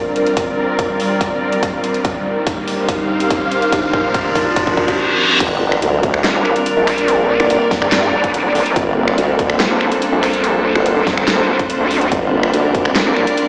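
Heavy and chaotic, this excerpt of half-time wobble dubstep in G minor at 143 BPM builds from a bright, morphing wavetable pad and veiled, muted strings, both pumping against the sidechain, through a filter-swept build-up with a riser, drum fill and reverse cymbal, into a drop at 5.4 seconds where an impact lands and two up-front, overdriven wobble basses come in, one sawtooth-edged at the drop and one nasal and resonant at 6.2 seconds, joining a tape-warm kit of huge snare, metallic hats, claps, snaps and crash plus a punchy layered kick, all heard through a lush hall reverb with a small-speaker tone.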